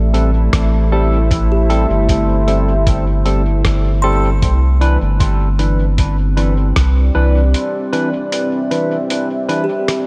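A dreamy, reverb-soaked mix in a lush hall frames this hazy, deep ambient dub excerpt at 77 BPM, where a dark, detuned pad with chorus and 12-bit sampler grit holds sustained chords moving from Am7 to Cmaj9, a round sine sub bass sits up front until the break at 7.5 s, a barky tine electric piano adds stabs through dub echo, a muffled, pitched-down sampler-style drum kit ticks out hi-hat and rim clicks with its own echo over a thumpy, tape-warm electronic kick in the background, and a woody, hollow kalimba enters at 1.5 s with soft, ringing arpeggios trailing dub echo before a drum fill at 9.9 s.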